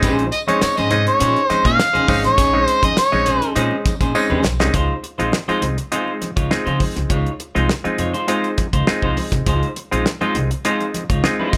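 A sly funk groove opens at once with a dry, up-front 70s drum kit, its fat snare and tight kick sitting under a rolled-off top, while a woody, growly pizzicato upright bass and a mellow, nasal clav stabbing through a combo amp fill in beneath. A clean, picked semi-hollow electric guitar adds hollow-bodied accompaniment, and very quiet congas with thick skins and soft hands sit low in the mix alongside a jingly, vintage tambourine. At 0.3 seconds an overdriven harmonica comes to the front with a gritty, punchy pop-style solo, light vibrato and tongue slaps, holding the spotlight until 3.5 seconds. A drum fill carries the opening Bbm11 passage into a Dbmaj9 section at 4.7 seconds, where the tambourine drops away and the band carries on the straight, even groove. Light reverb rounds out this short cut from a longer piece.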